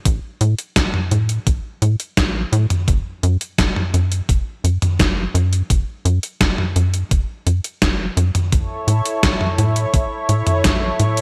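Bright, 1980s-style digital production with light reverb gives this short synthwave excerpt a romantic, uplifting glow at 85 BPM in 4/4, set in A major. A tight, punchy sequencer bass drives the piece from the start, its sawtooth and square-wave tones shaped by a fast-attack filter pluck that decays into a mellow, evolving tone, pumping with sidechain up front. Beside it, a detuned 8-bit digital drum machine supplies hi-hat, toms and a medium-tuned snare with a tape-warm, sampler-style character, dressed in small room and gated reverb. A thumpy electronic kick drum sits in the same small room and drops out at 10.8 seconds. At 8.5 seconds a lush, thick unison pad arrives on an A chord, airy and detuned with a noise layer, soft attack and chorus, pumping alongside the bass.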